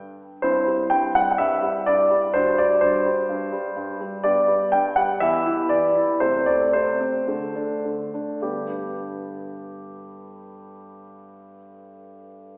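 A polished grand piano with long sustain plays this graceful, cheerful classical-period sonatina alone, moving through chords such as C/G, D7/G, Em and Am/C before settling on G as a new section begins at 8.4 seconds. The playing slows down from 3.3 seconds until that arrival, and the cut from a longer piece ends at 12.6 seconds. The instrument sits in a wet concert hall reverb, heard from further back in the room through a thin, telephone-like sound.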